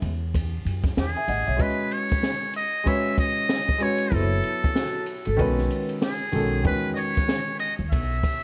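A metal-muted trumpet, buzzy and breathy with tape echo, carries the melody from 1.0 seconds over a relaxed jazz-hop groove at 95 BPM in E major, backed by a dark, intimate grand piano with audible action noise, a woody pizzicato upright bass, an open jazz kit with a punchy kick and high-tuned snare, and a brief ringing vibraphone line at 4.7 seconds, all under light reverb and vinyl crackle in this short excerpt.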